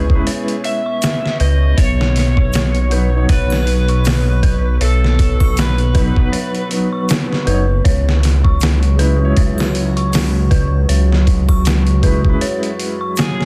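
Trip hop with a hypnotic, melancholic mood, cut from a longer piece, built on a gritty, pitched-down sampler-style drum kit with a thumpy kick up front beside a deep, rumbling detuned saw bass that stops at 12.4 seconds. A felt-muted upright piano, soft and boxy with audible action noise, carries the accompaniment through tremolo, sampler grit and tape echo. An eerie, warbling FM synth bell arpeggiates above, a moody ambient pad holds sustained chords in the background, a faint egg shaker and triangle sit far behind, and an overdriven slide guitar plays the melody with tape echo until 6.7 seconds before returning briefly at 13.2 seconds, in a dense, heavily limited mix with little reverb.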